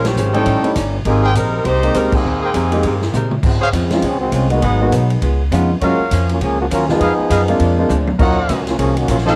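A clear trombone section takes the spotlight from 3.9 seconds, carrying a soloing second line through this joyful, brassy big band swing cut from a longer piece. Before that, an up-front saxophone section with soft-attack vibrato sings the melody until 3.3 seconds, while a smooth-topped trumpet section punches out stabs, a present, polished grand piano accompanies alongside a dark, compressed hollow-body archtop guitar sitting in the background, a woody, growly pizzicato upright bass holds the low end, and a natural-sounding drum kit with a punchy kick adds band accents and fills. Light reverb surrounds this home cassette recording, and the tape lends its tint to the piano, guitar, trumpets and trombones.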